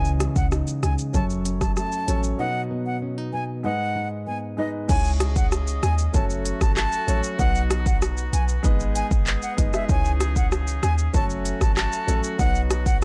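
Bouncy and sultry, this dancehall cut rolls along at 96 BPM in C# minor, with a breathy, reedy concert flute carrying the melody over warm baby grand piano chords, a deep, boomy 808-style bass and an up-front electronic drum kit of deep kick, crisp hats, handclaps, rim clicks and shaker. A dark, full-bodied nylon-string guitar plays thumb-plucked arpeggios until 5.0 seconds, and there is a break from 2.4 to 4.9 seconds. At 4.9 seconds a clear woodwind section enters with sustained, sidechain-pumped chords, all set in studio reverb within a dry, gritty hardware recording.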